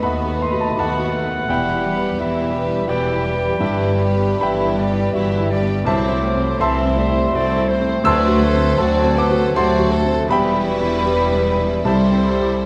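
A clear, intimate grand piano leads this lyrical, lush romantic movement in E minor, carrying the melody up front with audible action noise over a rubato 3/4 pulse at 67-86 BPM, while a distant violin section also carries the tune with smooth vibrato. Around it, a bright clarinet, an airy silver flute and a focused second violin section weave second lines, as a mellow bassoon and a very quiet viola section accompany, a horn section holds warm sustained chords, and close double basses with cellos anchor the bass. The full orchestra plays throughout this 12.7-second fragment of a longer piece, bathed in the wet bloom of a scoring stage, moving from B7/D# through Em, Am/C and D7, returning to Em before closing on Am7/C.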